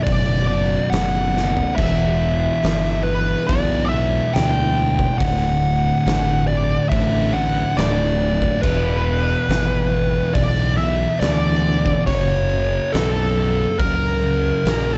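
Captured in a small room with a muffled, dark top end, this ominous stoner and doom metal excerpt crawls at 70 BPM in 4/4 through a Bm, Em, D, E and F# progression. Up front, a compressed fuzz lead guitar sings its melody through wah, distortion and analog delay, while two murky, picked fuzz guitars grind out the riff in the background beneath it, anchored by a warm, overdriven fingered bass with tube saturation. Behind them an oversized, low-tuned acoustic kit booms and pumps with a fat snare, gritty saturation and dull cymbals, dropping a quick fill at 1.3 seconds.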